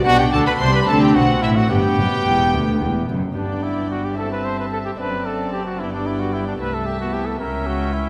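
A solo trumpet with a soft attack and light vibrato carries the melody from 0.1 s in this brilliant, festive fragment of a baroque-style concerto movement, cut from a longer piece. It is in G major and 6/8, moving at 74 beats per minute counted in dotted quarters with a straight feel. A distant violin section also plays the melody with a reedy, gut-string tone. A darker second violin section and a smooth-topped viola section fill the inner lines in period style. Below them, a rich double bass section and a cello section, set in the background, anchor the bass, while a delicate, fingerpicked lute with bright double strings adds accompaniment. The harmony moves from G/B through D5 and G, then shifts at 3.4 s into a second passage that passes through Am7/G, D7/F#, Am/C and a closing C#dim, all bathed in a wet concert-hall reverb with a long 2.1-second tail.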